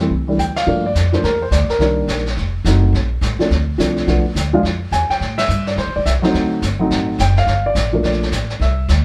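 Recorded live in one room with moderate studio reverb, this short cut from a longer jazz piano trio piece swings with a warm, sophisticated mood: a dark, mellow baby grand carries the melody up front over a woody, growly pizzicato upright bass, while a vintage brush kit with dark cymbals sits lower in the mix, adding a drum fill at 0.4 seconds, with band accents landing at 0.5 and 5.3 seconds.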